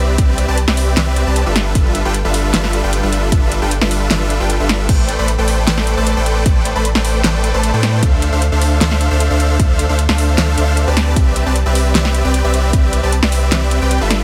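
A bittersweet, emotional future bass drop in a half-time feel, cut from a longer piece, where huge, lush detuned supersaw chords pump with sidechain and digital delay over a thick, saturated sub bass, a punchy layered electronic kick that drops out at 4.5 seconds, and a tape-warm pop drum kit with a fat snare, metallic hats and crash, all pressed into a dry, heavily compressed radio sound as the harmony moves from Cmaj7 and G13 through Am11 and Dm9.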